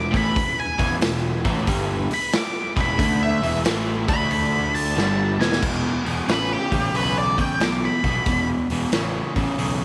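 This short cut from a longer piece is a lightly reverberant, up-front blues rock and southern rock recording, driving and raunchy, with a swung shuffle feel. A raw garage drum kit leads the mix, its saturated, gritty sound set in a bright stone room with a pumping ambience, a punchy kick, a medium-tuned snare, hi-hat, crash cymbal and a rolled-off top. An overdriven, double-tracked rhythm guitar plays a compressed, picked riff, while a growly fuzz bass, bright and overdriven, holds down the low end. Over this, a dark octave-fuzz lead guitar takes a solo through wah, distortion and tape echo, continuing until 8.5 seconds. Beneath it, a very quiet tonewheel organ adds full, shouting sustained chords with key click, chorus vibrato and a slow rotary speaker until 5.6 seconds, as a drum fill starting at 5.0 seconds pushes the band into the next section.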